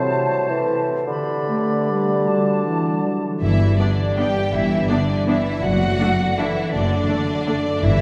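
Festive and sweeping, this orchestral ballroom waltz in G major moves in 3/4 at roughly 143-177 BPM with a rubato feel, and it is cut from a longer piece. It opens with woodwinds carrying the inner lines: an airy, bright small flute group, a smooth-topped oboe and a dark, distant clarinet that sits very quiet, over a warm bassoon accompaniment and mellow French horn chords. A concert harp rings out fingerpicked arpeggios in the background throughout. At 3.4 seconds the strings take over, with a focused, close violin section singing the melody above a lush second violin line, a clear cello section and a smooth double bass section holding the low end, while a viola section fills in from 3.8 seconds. Timpani struck with hard mallets mark the arrival of the strings and return at the very end. The whole piece is bathed in a long, wet cathedral reverb, giving it the spacious sound of a church or concert hall.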